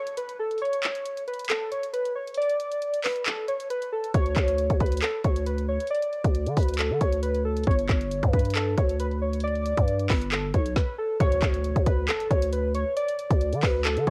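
Hip hop and trap at 136 BPM in a half-time feel, this wistful, dreamy piece opens on a break where warbling, detuned lo-fi synth keys carry the melody through chorus and a low-pass filter, beside a very quiet downlifter and an up-front trap kit with a hard-clipped kick, woody snare, bright hats and handclaps. A growling, buzzy 808-style bass enters at 4.1 s as the chords move from Bmadd9/D to G, and a faint electronic impact lands at 11.2 s. The keys' nostalgic, mellow tone sits in light reverb on a home cassette recording.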